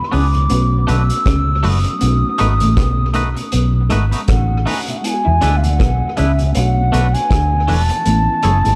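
Lovers rock reggae with a sweet, tender mood, this short excerpt from a longer piece moves at an easy pace with a swung sixteenth-note feel. An airy bamboo bansuri carries the melody, its soft attack, vibrato and rolled-off highs trailed by tape echo. Beneath it, a foam-muted fingered electric bass sits round and up front, while a vintage drum kit with a punchy kick, hi-hat and rim click adds a pumping small-room character and its own tape echo. An electric guitar through a small old amp plays a slightly broken-up riff with analog chorus and tape echo, and a twangy, scooped electric guitar adds bright, clean stabs shaded by harmonic tremolo. A worn, slightly out-of-tune tine electric piano and a very quiet tonewheel organ with slow rotary swirl fill the background over chords moving from E7 to Bm7 and B7, closing on Amaj7. Light reverb and a dark production give the whole a close, intimate glow.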